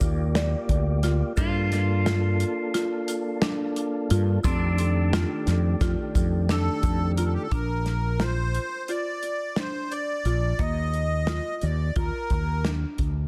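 A dense, heavily limited modern master with light small-room reverb frames this driving, intricate progressive instrumental, cut from a longer piece. It moves in 9/8 at 176 BPM counted in eighths, with a straight feel in Bb major, and the harmony passes from Ebmaj9 through Gm7 and F13 before settling on Bbadd9 and Ebsus2. A dark, punchy soul drum kit and a round, mellow fretless bass sit up front throughout, while a buzzing, woody marimba plays arpeggios through a digital delay. In the opening stretch, a percussive tonewheel organ, lightly overdriven with chorus vibrato and a fast rotary speaker, fills out the accompaniment. Alongside it, a twangy electric guitar at the edge of break-up adds a delayed second line, and a grainy tube shaker rustles in the background. At 6.5 seconds a sweet, reedy accordion with light tremolo tuning takes up the melody, and by 7.5 seconds the organ, guitar and shaker have dropped away.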